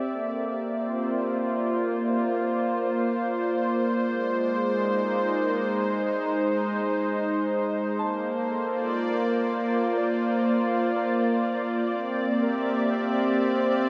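Bathed in a vast, echoing cathedral reverb, this serene ambient fragment rests on an up-front, detuned sawtooth analog pad holding sustained chords, while a very quiet, velvety synth lead carries the melody with vibrato, a soft FM bell chimes brief arpeggios at the outset and again from 8.0 s, and a warbling, organ-like drone enters in the background at 9.0 s as the harmony moves from Bb through Ab and Bbmaj7 to C7.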